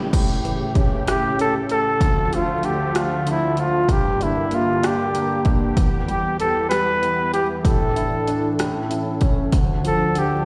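This six-eight pop ballad is melancholic and dramatic, and it is cut from a longer piece that sounds like a live gig heard through a venue's PA, with recital hall reverb and vinyl crackle. A clear concert grand piano carries the accompaniment from the start, intimate and polished, with deep bass, long sustain and audible action noise. Beneath it, an airy, detuned sawtooth pad holds sustained chords, evolving through a filter swell with a noise layer, a slow attack, a long release and a bright, chorused shimmer. A punchy analog drum machine sits up front with a tape-warm crash cymbal, hi-hat, kick drum and rim click. At 1.1 s a flugelhorn takes the solo melody in a jazz style, using vibrato and scooped notes and doubled by a slapback echo. The harmony moves from D minor through G minor and E minor to a suspended A before resolving to D minor near 9.5 s.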